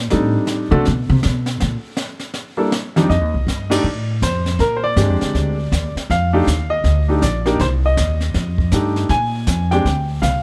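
A swung 4/4 at 160 BPM in F mixolydian carries this warm, sophisticated jazz piano trio fragment, where a woody, thumpy pizzicato upright bass with steel strings sits up front and features for the first 3.1 seconds, a smooth, vintage concert grand with deep bass plays the melody, and a polished, airy brushed kit with dark cymbals, a high-tuned snare and a boomy kick swings behind them, all in a dry studio room with a band accent at 3.7 seconds over chords moving from F13 to Bb13.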